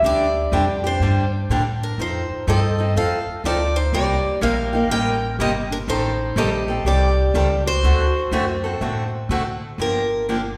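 Upright bass, a picked steel-string guitar and a growling clarinet open this bittersweet slice of acoustic string swing at once, with a second steel-string guitar taking the melody a moment later, at 0.1 seconds. The tune moves at 123 BPM in a lilting swung 4/4, passing through D7sus4, F7, Cm9, Am7b5 and D7 before settling on Gm7 near the end. Up front, the melody guitar sounds bright with fresh strings, while the accompanying guitar has a boxy parlour character. The pizzicato bass is woody and warm, and the clarinet's second line is breathy, raspy and gritty, with vibrato and a soft attack. The clarinet drops out at 9.3 seconds, and the bass carries on to 10.6 seconds, all within the lingering reverb of a church or concert hall.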